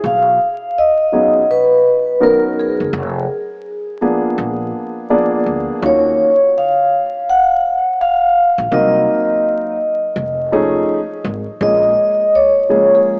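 Swung sixteenths at 83 BPM in 4/4 carry this nocturnal, mellow hip hop excerpt in Bb phrygian. A soft-mallet vibraphone leads the melody with a ringing, airy tone, slow motor vibrato and analog delay. Beneath it a dark concert grand piano comps smoothly up front and adds a fill from 4.7 to 5.8 seconds, while a woody, thumpy pizzicato upright bass holds the low end until 11.9 seconds, all soaked in lush hall reverb with vinyl crackle and a small-speaker sound.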